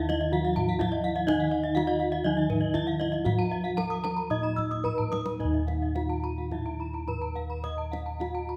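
A straight pulse in four drives this brief, shimmering Balinese gamelan passage, cut from a longer piece and set in a pelog scale. Bossed gongs anchor the bass with a round, mellow, close-miked tone that sits up front, while a bronze metallophone struck with a wooden mallet carries the ringing, mid-forward melody. Beneath it, a second metallophone played with padded disc mallets adds a dark, smooth accompaniment until it drops out at 5.4 seconds. Two higher metallophones struck with horn mallets spin bright, airy arpeggios, and the paired tuning across the metallophones produces the characteristic shimmering beats. A deep kendang stays in the background, breaking into a drum fill from 4.8 seconds that leads into a second section, all bathed in the lingering reverb of a recital hall.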